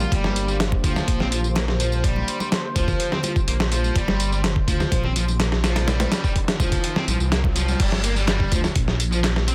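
A dense, heavily limited mix with light digital reverb frames this gritty, energetic breakbeat fragment at 125 BPM in G minor pentatonic, where an overdriven, thumpy sampler-style drum kit sits up front beside a deep, rumbling detuned saw bass, a bright, double-tracked fuzz guitar riff with delay, dry electronic tambourine and handclaps in the background, very quiet ringing congas, and a swirling, nasal analog pad with phaser, chorus and sidechain pumping, while a faint riser enters at 5.4 seconds before the pad and congas stop at 7.8 seconds for the drop.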